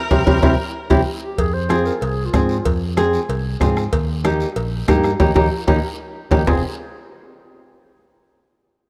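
A driving, danceable cumbia in straight 4/4 at 189 BPM and F minor, this short cut from a longer piece rides on a soft-beater bombo, ringing low-tuned congas, a raspy guiro, and close, dry metal-shelled timbales and cowbell set in the background, under a round, amped fingered electric bass. An up-front fingerpicked flamenco guitar with audible finger squeak carries the accompaniment, while a distant, focused bowed viola opens the melody before a mellow, breathy subtone clarinet takes a jazz-style second line at 1.4 seconds as the chords move from C7 to Fm and Eb. Band accents and drum fills mark the opening and the close around 5.2 seconds, all bathed in a moderate plate reverb in a rough home-demo mix.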